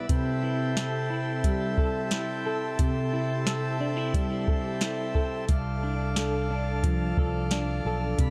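A soft vintage rhythm box sets a straight 4/4 pulse at 89 BPM from 0.1 seconds, its deep kick, crisp snare and metallic hi-hats sitting up front in this dreamy, ethereal dream pop excerpt cut from a longer piece. A clean semi-hollow electric guitar plays arpeggios throughout, its hollow-body tone coloured by ensemble chorus and digital delay. A pipe organ on a principal chorus holds full, romantically voiced sustained chords. The harmony moves from Am7/C to F6 at 5.5 seconds, where a round, punchy fingered electric bass enters low and up front. Light reverb and digital ambience wrap the dark, warm production, tuned slightly below standard pitch to A4 = 438 Hz.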